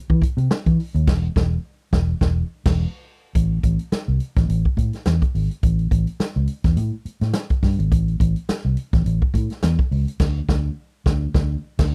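Playful and strutting, this short funk cut from a longer piece moves at 105 BPM in 4/4 with a light swing on the sixteenth notes, tuned slightly flat with A4 at 438 Hz. A vintage muted electric bass, played with the fingers, carries the low end from E1 to E3 with a dark, round, foam-muted tone coming through an amp, sitting up front in the mix. Alongside it a swinging big-band drum kit brings crash cymbal, hi-hat, a medium-tuned snare and a boomy kick, captured with a natural studio-room sound and also placed up front. The band hits accents together from 1.1 to 3.4 seconds, then moves into a new section, returning to ensemble accents at 10.2 seconds through to the end. The dry, close sound has very little reverb and evokes a 1970s studio session.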